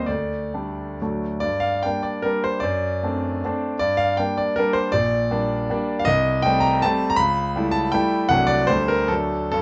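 Classical romantic triple-time dance in G minor for solo concert grand piano, wistful and nostalgic, moving with rubato between 124 and 174 BPM in dotted rhythms, its brilliant, polished tone and deep bass captured up front by close, detailed microphones in a moderate studio reverb, as a brief Dsus4-to-D opening gives way at 1.4 seconds to a passage that winds through chords such as Gm, D7/F#, Am7b5/C and A7/C# before settling on D in this short cut from a longer piece.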